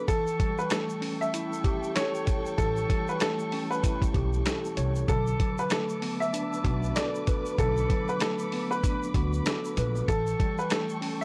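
Boom-bap hip-hop at 96 BPM with a 60% swing, moody and reflective, where a gritty, thumpy sampler-style drum kit and grainy egg shaker back a mellow tine electric piano on cassette tape, a slightly detuned upright piano melody and lush bowed strings over A7 and Bm7 chords, before a woody pizzicato upright bass enters at 2.6 seconds, all in a dry, small room with a dusty tape character.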